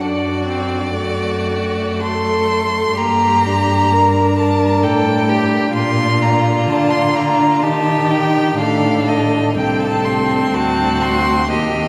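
Classical chamber music: a solemn, elegiac slow movement for string quartet in a rubato triple metre, cut from a longer piece, in which an intense, rich first violin sings the melody up front with vibrato over a second violin whose expressive line slides with portamento, an even, smooth-toned viola filling in the accompaniment, and a soft-attacked, warm cello anchoring the bass close to the listener, all bowed by single players and bathed in the long, wet reverb of a church or concert hall.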